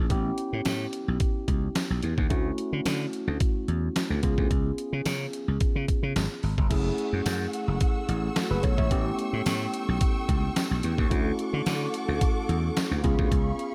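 This slick, danceable slice of early-eighties boogie funk opens at 0.0 s with a worn, slightly out-of-tune tine electric piano playing accompaniment through its built-in speakers, over an up-front slap bass that sounds bright, growly and punchy. A detuned 8-bit drum machine joins almost at once, with a thumpy kick, a medium-tuned snare, hi-hat and crash cymbal in a sampler-style, tape-tinged sound. Set behind them by 0.7 s is a jingly tambourine that sits distant in a large room. The groove moves at 109 BPM in a straight 4/4 in F# minor, tuned to A4 = 435 Hz. It cycles through A7, Dmaj7 and C#7, then opens the second half on F#m7 before returning to A7, Dmaj7 and C#7. At 6.7 s a lush, bowed symphonic string section enters with soft-attack, expressive sustained chords and vibrato, spanning A3 to E6 while the rest carries on under light reverb.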